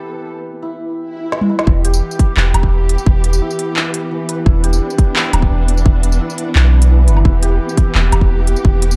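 A half-time drum and bass groove at 172 BPM in E minor, this dark, heavy excerpt opens on a lush, bowed cello section with vintage sampler grit and sidechain pumping, hammered santur arpeggios ringing through digital delay under a filter sweep, and a grainy, flickering granular texture drifting in the background. A faint electronic swell rises at 1.1 seconds, and at 1.3 seconds an overdriven electronic kit with woody snare, crisp hats, handclaps, tambourine, toms and woodblock enters with a fill. At the drop at 1.7 seconds, a hard-clipped kick and a deep, sine-like 808-style bass with tube saturation land up front, all within a shadowy digital ambience.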